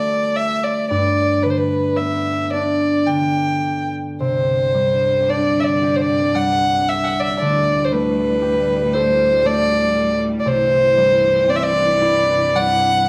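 Pastoral and nostalgic, this short section cut from a longer Celtic slow air unfolds in a rubato three-beat lilt. A solo fiddle carries the melody up front, its dark, woody tone touched with light vibrato and set at a slight distance. Beneath it, a concert harp is fingerpicked in a mellow, ringing accompaniment that sits lower in the mix. At 4.2 seconds a studio string section enters with sustained chords, its bowed, biting tone lush and intense yet placed quietly in the background. The whole performance breathes in a moderate recital hall reverb, lending the sparse trio a sense of space.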